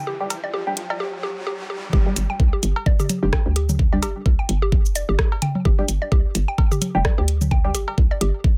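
Sparse and clinical, this excerpt of minimal techno runs at 129 BPM in 4/4 with a light swing on the sixteenths. It opens with a short build-up: an electronic riser, a very quiet pulsing gated texture on G5 that lasts until 1.0 s, and a hollow, bouncy FM bass with sidechain pumping. A woody, round mallet-like synth pluck carries the riff through chorus and dub echo, and muted, detuned chord stabs colour the space with phaser, lush chorus, cassette-tape grit and digital delay. A garage drum kit with metallic hats, rim clicks and shaker sits up front from 0.3 s, joined by dry, tape-warm electronic cowbell, toms and congas sent through digital delay. At the drop at 1.9 s, a layered, knocking electronic kick drum lands as the loudest element in the mix. The sound is close and dry, with very little reverb and a filtered low end.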